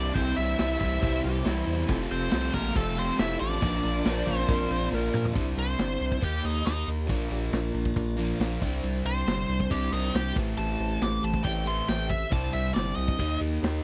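The beat is a straight 4/4 at 138 BPM, driven by a vintage acoustic drum kit with a punchy kick, medium-tuned snare, toms, ride and dark crash cymbals, its top rolled off, with a drum fill from 4.9 to 5.4 s. Under it sits a deep, thick saturated sub bass, sine-like and up front, while a crunchy, bright double-tracked overdriven guitar plays the picked riff in C mixolydian, giving this swaggering, driving classic rock fragment its push. Up front, a nasal lead guitar with a parked wah carries the melody, joined at first by a dark, smooth overdriven lead in the background that stops at 4.9 s and by a fingered overdriven slide guitar heard faintly from 1.2 s. At 5.4 s the music moves into a lead guitar solo over chords that shift between Cadd9, Eb, Bb and Am7. Very quiet in the backdrop, a piping, scooped tonewheel organ holds sustained chords through a slow rotary speaker, and a reedy, worn, slightly out-of-tune electric piano adds accompaniment through its built-in speakers. 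The sound is dry and close, in the manner of a 1970s studio recording.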